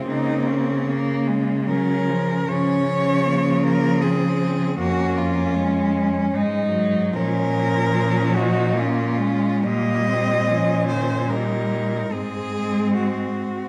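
Serene and lyrical, this classical excerpt for four cellos sways in a flexible, rubato three-beat metre, with all four bowed players sounding together throughout its 13.7 seconds. A close, up-front cello carries the smooth, even melody with vibrato, and a more distant cello sings a second line beneath it. A third cello adds a soft-attacked, expressive accompaniment with portamento, while a focused bass cello grounds the harmony as it moves from Bbm/Db toward Ab, all set in a dark, warm production within a reverberant recital hall.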